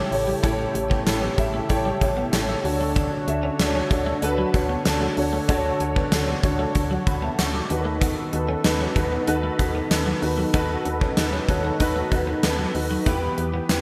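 A straight 4/4 groove at 95 BPM from a gated 80s drum kit, with a fat snare, punchy kick, hi-hat and tambourine up front, drives this uplifting, nostalgic 1980s-style pop excerpt, where a round FM bass, a dark, mellow grand piano with audible action noise and ensemble chorus, a twangy twelve-string electric guitar riff soaked in lush chorus and delay, and a shimmering pulse-width pad in the background move through A7, Dmaj7 and B7/D# to Em inside a lush hall reverb and bright digital production.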